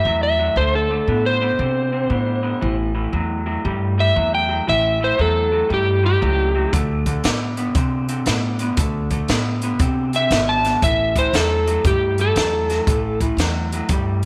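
Electric blues shuffle, soulful and swaggering, cut from a longer piece: a dark slide guitar played with fingerpicks carries the melody up front until 6.7 s and returns at 10.2 s, over a slightly broken-up, lo-fi, compressed riff from an electric guitar through a small old amp and a thumpy, woody pizzicato upright bass on gut strings, while a distant, roomy compact cocktail drum kit with a punchy kick and high-tuned snare joins at 6.7 s, the whole set in moderate echo-chamber reverb and small room ambience.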